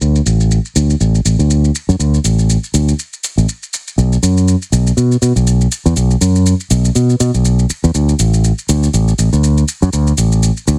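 A bright, direct fingered electric bass sits up front with a filter sweep running through it, while a layered, tape-warm electronic shaker, low-pass filtered and set back in a small room, adds to the swung groove in this nostalgic, groovy filtered disco house excerpt, which has a dry, heavily compressed radio sound.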